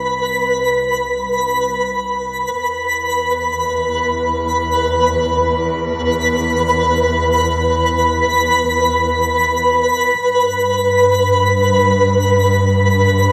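Ambient and free-flowing in a reflective, serene mood, this short excerpt cut from a longer piece sets a veiled, con sordino cello section fading in low beneath a twinkling granular texture with an octave-up shimmer, lush chorus and soft, sustained attacks, all soaked in a dreamy cathedral reverb as the harmony moves from E5 at 2.6 seconds to G at 10.2 seconds.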